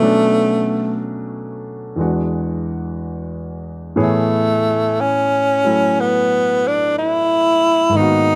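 A breathy tenor saxophone carries the melody up front, its soft attacks, scooped notes and vibrato giving this wistful, intimate jazz ballad a close, confiding voice. Beneath it, a warm grand piano with a natural tone accompanies across the full 8.4 seconds, moving through Bm7, E9 and Amaj9 at a slow 60 BPM with a lilting swing in 4/4. Light reverb lends the short fragment, cut from a longer piece, a soft sense of space.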